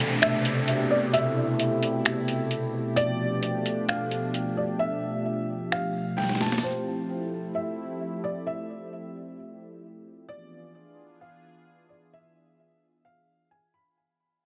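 A hazy, ethereal cloud-rap excerpt at 131 BPM in a half-time feel opens with a soft, felt-muted upright piano melody echoed by delay, a bright, detuned sawtooth pad with ring modulation, filter swell and chorus, a barely audible thumb-plucked harp, an electronic downlifter, and a muffled, pitched-down, overdriven lo-fi drum kit of finger snaps, hi-hat and snare up front, all over Am11 and G9. The drums play through a break with a fill from 6.2 s and stop at 6.7 s, leaving the mellow, intimate piano and the evolving pad to carry the chords Fmaj9 and E7b9. A huge ambient reverb and a dark, top-trimmed sound wrap the passage as it fades out across its full 14 seconds.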